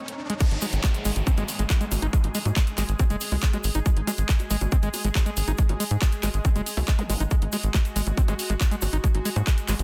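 Psychedelic trance with a driving, hypnotic feel, cut from a longer piece and opening on a short riser that drops at 0.4 seconds into a dense, heavily limited modern mix with little reverb. An overdriven, tight electronic kick sits up front, joined by a layered drum kit of bongos, crash cymbal, handclaps and bright hi-hats, also overdriven, while a grainy acoustic egg shaker ticks away in the background. Underneath, a tight, punchy sequencer bass built from sawtooth and square waves pulses with a plucky filter and tube saturation, mellow yet driving. The standout is a screaming acid line, squelchy and aggressive, its resonant filter sweeping over a distorted, chorused and delayed riff that pumps against the kick. Behind it all, an evolving wavetable pad holds detuned, warbling chords with a vintage, full-bodied character, carrying its own built-in reverb and pumping along, while a riser, downlifter and zap flicker in the background during the first 3.9 seconds and again at 7.0 seconds.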